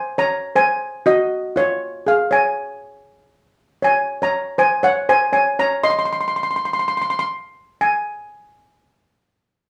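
Bouncy and sunny, this short calypso clip at 119 BPM features a lone steel pan, played up front with hard rubber sticks and ranging from F4 to C6 with a metallic, shimmering yet dark and smooth tone, moving through Ab7, Fm and Bbm9 before falling silent at 8.1 seconds in a studio room with moderate reverb.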